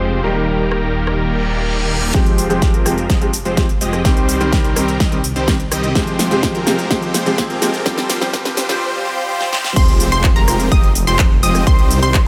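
Euphoric and anthemic, this festival progressive house excerpt at 126 BPM in F minor opens on a huge, bright supersaw riff, a thick, menacing detuned saw bass and a clear, boxy grand piano, all pumping with sidechain, before a pop kit with a fat snare and crisp hats arrives at 0.7 s, a punchy electronic kick sits up front from 2.1 s through a filter-swept build-up with drum fills and very quiet risers, and at 9.8 s the drop lands with an impact and a lush unison pluck arpeggio over Fmadd9 and Cm chords in light reverb.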